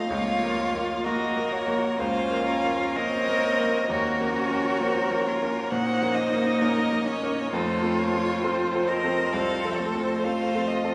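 A warm, bowed violin carries the melody with smooth, even vibrato, singing between C5 and Gb5 in this elegiac, solemn slow movement for piano quintet in Bb minor. A second violin with a focused, close tone adds a second line beneath it, while the cello, also bowed with vibrato, joins at 0.1 seconds with its own second line set high in its range. The baby grand piano sits up front with a clear, natural sound and short sustain, its accompaniment reaching from deep in the bass up to Bb4, and the viola fills in behind with a rich accompaniment kept in the background. The tempo is 66 BPM in 4/4, played with rubato, and the harmony moves from Bbm/Db to Ebm7 and then to F. A long cathedral reverb wraps the ensemble in the resonance of a church or concert hall, deepening the mournful, reverent mood of this passage cut from a longer piece.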